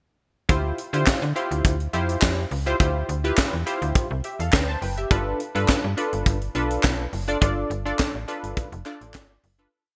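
A funky, late-night groove in early-eighties boogie funk, this short piece moves at 104 BPM in a straight 4/4, staying in a single verse that rides from Dm11 to G7 at 5.1 seconds. A tight funk drum kit sits up front with a four-on-the-floor boogie beat, its high-tuned snare layered with a clap and its kick kept tight, all wrapped in gated reverb. A slap-like FM bass with a snappy, metallic attack plays a fat syncopated line full of muted ghost notes and chromatic approach notes. Above it, a punchy polysynth built on detuned sawtooth tones and a filter pluck comps in syncopated rootless chords through a warbling chorus, tossing in short fills. A very quiet group handclap sounds hollow and distant on the backbeat from 1.1 seconds, and the bright, digital production carries light small-room ambience before a fade-out that begins at 7.4 seconds.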